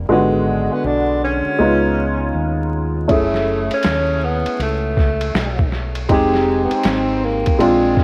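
Jazz-hop at 80 BPM with a swung, nocturnal and smoky feel in F# dorian, this short cut from a longer piece sets a woody upright piano up front over a deep, round fingered electric bass while a breathy, distant tenor saxophone with vibrato, scooped notes and tape echo whispers its solo through G#m7b5, C#7, F#m7 and Fm7, and a muffled, overdriven sampler-style drum kit with a thumpy kick enters at 3.1 seconds, all wrapped in light reverb, cassette tape warmth and vinyl crackle.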